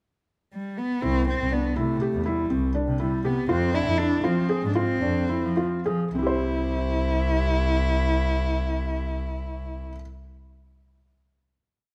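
A close, detailed recording with light reverb frames this short, complete chamber piece in C major, hopeful and playful in an uneven 5/8 at 198-244 eighth-note beats per minute. A dark, expressive bowed cello enters at 0.5 seconds with a free melody full of vibrato and portamento, joined at 1.0 seconds by a soft, felt-muted upright piano repeating an intimate arpeggio ostinato with audible action noise, and a clear, focused bowed double bass playing a syncopated riff up front. The tempo slows from 3.5 seconds as the harmony moves from C to F minor, before the trio settles on a final C chord at 6.1 seconds.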